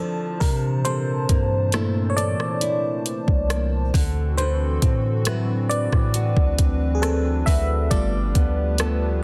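Late-night and sensual, this contemporary R&B excerpt at 68 BPM features a glassy, bell-like FM electric piano with chorus taking a solo over a hollow, airy pad that pumps with sidechain, fingerpicked nylon-string guitar arpeggios through delay, and, from 0.4 seconds, a deep, up-front 808-style bass and a smooth electronic kit of soft kick, dark hi-hats and rim clicks, moving through C13, D13 and G9 in a dense, dry, heavily limited mix.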